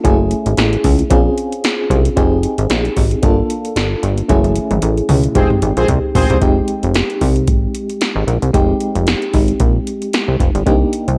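Set in a digital ambience, this short cut from a longer early-eighties boogie funk track moves at 113 BPM in 4/4, with a 16th-note swing that keeps it funky and danceable in F minor. Up front, an electro analog drum machine pairs a deep kick and punchy snare with metallic hats and toms, all tape-warm and washed in gated reverb. A plucky, saturated analog bass mixes sawtooth and square waves with a ring-modulated edge, each note snapping in fast and decaying, while an FM electric piano with tremolo and a noise layer comps through lush minor ninth chords. A drum fill and band accent arrive at 4.3 seconds, and from 5.4 to 6.4 seconds a bold, fat analog synth brass line cuts in, detuned and chorused with vibrato and a filter sweep. The groove then settles into its second section, turning toward a Cm9 chord near the close.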